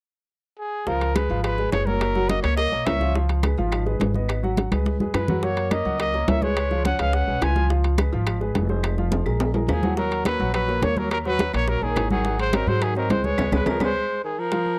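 Afro-Cuban jazz at a brisk 211 BPM in 4/4 with a straight feel, this lively, sophisticated passage in Db mixolydian is cut from a longer piece. A breathy, whispered trumpet carries the melody up front with vibrato and a soft attack, entering at 0.6 s, while a clear tenor saxophone with scooped notes sits further back in a roomy space as a second line; both horns carry a slapback echo. An upright piano with audible action noise and long sustain fills in the harmony, and a growly, steel-strung pizzicato upright bass stands forward, moving through changes such as Db7, Gb7 and Ebm7. The percussion bed holds thick-skinned congas, tight, high-tuned bongos struck with hard hands, ringing metal-shell timbales, and very quiet, woody claves that sound distant. Drum fills punctuate the phrases and a band accent arrives at 13.4 s, in a dry, close 1970s-style studio recording with little reverb.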